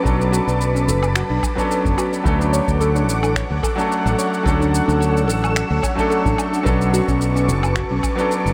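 Soaked in a huge, dreamy ambient reverb, this short cut from a longer sunset chillout piece feels relaxed and smooth, with a gentle swing on the 16ths as it moves from Bm9 to Dmaj7 and back. A clear baby grand piano with delay plays the accompaniment beneath silky, warbling string machine chords, while a soft, round, dark pluck with chorus and delay ripples arpeggios in the background. Up front, a bright, growly fretless electric bass enters at 0.1 seconds alongside a deep analog electronic kick and a layered, tape-tinged kit of electronic shaker, woodblock and finger snaps.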